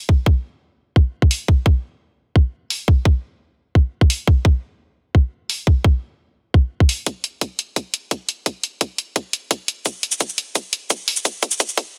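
A tight, layered electronic kick drum sits up front from the start of this tense, futuristic drum and bass excerpt at 172 BPM in straight 4/4, its low end trimmed by a high-pass filter. Produced electronic hi-hat and cabasa enter at 1.3 seconds, also close and prominent, in a dry space with a dense, heavily limited modern master. A build-up begins at 7.1 seconds and closes with a drum fill from 9.9 seconds.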